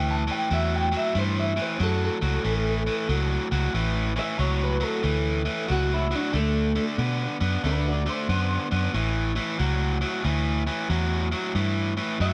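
Rollicking and gritty, this electric blues shuffle rolls along at 92 BPM in 4/4 with a strong swing, set in A mixolydian and cut from a longer piece. A biting overdriven guitar sits up front with a picked riff in its low register, while a vintage fingered electric bass, dark, round and foam-muted, anchors the bottom just as prominently. Above them, an electric guitar at the edge of break-up carries the melody from A3 to A5, its compressed, picked tone dressed in a lush chorus. All three parts play throughout the roughly 12-second span, with the lead guitar's solo running across both passages. The harmony moves from A to D7 at 6.3 seconds and on to A7 at 8.9 seconds, all inside a light digital reverb.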